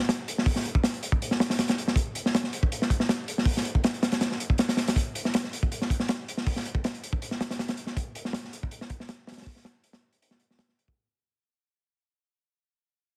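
Drum and bass excerpt, atmospheric yet frenetic, built solely on a crunchy breakbeat drum kit of hi-hat, tight kick and medium-tuned snare that sounds dark, gritty and saturated with a rolled-off top, sitting up front in a small dry room with a heavily compressed radio sound, dropping in at the start before fading out from 5.0 seconds.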